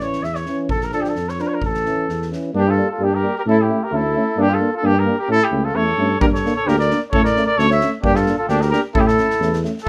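Balkan folk for brass band, this fiery, restless passage moves at 131 BPM in 2/4 with a light swing, rooted in A phrygian dominant and cut from a longer piece. A mellow trumpet carries the melody up front with light vibrato and a distant, roomy classical tone, while a dark tuba anchors the bass just as prominently. Two euphoniums sit in the background as accompaniment, one soft-attacked and the other vintage-sounding, filling the middle of the band. A street-band drum kit, boomy in the kick with a medium-tuned snare and an airy, polished big-room sound, drives the first 2.4 seconds, drops out, then returns at 6.2 seconds. At 2.6 seconds a second trumpet joins with its own line beneath the lead, as the harmony rocks between A and G minor under moderate studio reverb.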